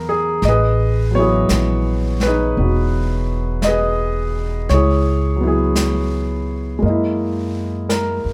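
A wistful, melancholic jazz ballad fragment, swung gently in 4/4, where a warm, up-front concert grand piano with a deep low end comps through rich extended chords from Amaj9#11 to C#m7 and F#13. A woody, dark pizzicato upright bass sits close beside it, while a brush drum kit, entering at 0.4 seconds, adds soft brushed snare and hi-hat further back in a studio room. Light reverb gives the short passage a natural, intimate air.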